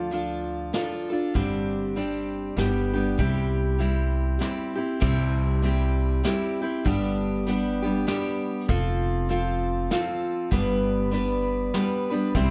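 Acoustic folk in a peaceful, pastoral mood, swaying in swung 3/4 at 98 BPM in C major, with an up-front picked steel-string guitar carrying the chords with a touch of finger squeak, a woody, thumpy pizzicato upright bass on gut strings, a distant, roomy brushed drum kit with dark cymbals and a tight kick, and a grainy egg shaker joining quietly in the background at 5.0 s, set in light reverb within a warm production.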